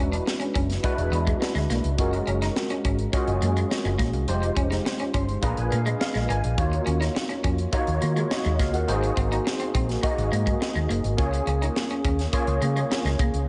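Urban and nocturnal, this polished 1980s jazz-funk pop excerpt moves at a straight 104 BPM in 4/4, with a barky, overdriven tine electric piano heard through a combo amp carrying the accompaniment in ensemble chorus and stepping out with a fill from 4.9 to 6.6 seconds. A clean, picked electric guitar riff sits lower in the mix under lush chorus, while a dark, round hollow-body short-scale bass plays fingered and punchy up front, joined at 0.1 seconds by a tight funk kit of kick, high-tuned snare and hi-hat dressed in gated reverb. Rich extended chords such as E9, Fm9 and Bb7b9 drift through to a closing Db6, all set in a small, lightly reverberant room with a rolled-off top end.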